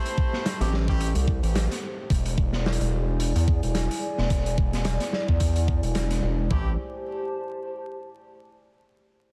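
A gritty, overdriven synth bass with oscillator sync growls up front from 0.6 s in this swaggering, playful glitch hop excerpt at 109 BPM, swung on the 16ths in A minor pentatonic, riding a knocking, layered electronic kick and toms and a smooth acoustic hi-hat and snare from a bright stone room, while punchy, tight horn stabs with digital delay open the passage and return at 6.5 s, and a deep, nasal analog pad with lush chorus and a warbling, nostalgic lo-fi pad with built-in reverb pump beneath over Am7 and E7, finished by a dense, heavily limited master dusted with vinyl crackle.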